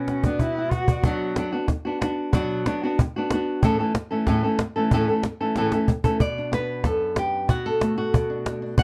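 A dark, fingerpicked flamenco guitar and a single bowed cello open this mournful, passionate flamenco piece together, with the cajon entering a moment later on a drum fill. The cello, nasal and woody with vibrato and portamento, sits up front in a mid register and falls silent at 1.0 seconds, leaving the guitar to carry the melody across its full range. The snappy acoustic cajon, with its snares, stays close, dry and up front at a brisk 186 BPM in a straight 4/4, and another fill arrives at 5.6 seconds. The harmony rests on B minor, moves to A, then returns to B minor at 6.2 seconds before shifting to D over B. Light reverb and a dark, warm production frame this excerpt, cut from a longer piece.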